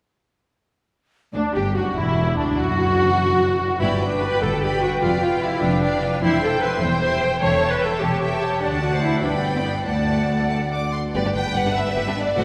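A cheerful, lively classical passage in G major, cut from a longer piece, opens at 1.3 seconds with a lush orchestra in a straight 6/8 at 98 BPM, where a warm, smoothly bowed violin section carries the melody over a background second violin line, a pure, bright flute section and a distant, roomy clarinet (both falling away at 10.9 seconds), an up-front viola section for accompaniment, and a close, focused cello section with a clear double bass section on the bass, all bathed in the long, wet reverb of a cathedral-like hall.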